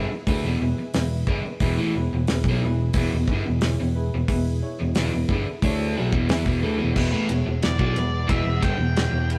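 A rough rehearsal-room recording with a moderate stone-room reverb carries this sunny, driving classic rock excerpt, cut from a longer piece. A bright, scooped, double-tracked overdriven guitar riff sits up front with a damped 70s drum kit of fat snare, tight kick and dark cymbals, over a punchy fingered bass, while a woody upright piano plays accompaniment alongside a very quiet, lush string machine holding sustained chords. The piano takes a fill at 5.6 seconds, and at 7.6 seconds a distorted octave-fuzz lead guitar enters with a solo melody.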